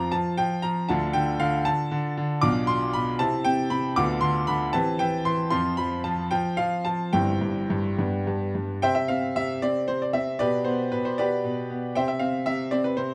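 A 6/8 at 77 BPM in dotted quarters, played with rubato, carries this elegant, playful classical-period sonatina excerpt in C major, where a solo grand piano with a brilliant, vintage tone and long sustain sits up front, spanning G1 to D6 in a moderate recital hall reverb, moving through chords like Dm, Bdim and C/E before a second section from 8.8 seconds settles on G/B and returns home to C at 12.0 seconds.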